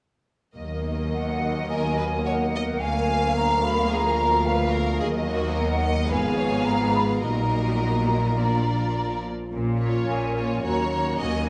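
Classical orchestral music in Eb minor at 108 BPM with an urgent, stormy mood, cut from a longer piece. At 0.6 seconds, warm violins carry the melody over an expressive viola accompaniment with portamento, mellow French horn chords in the background, and a bass line from rich cellos and clear, intense double basses. Pure flutes add a second line from 1.1 seconds and a smooth, close studio violin section joins at 1.7 seconds, all set in a wet recital-hall reverb.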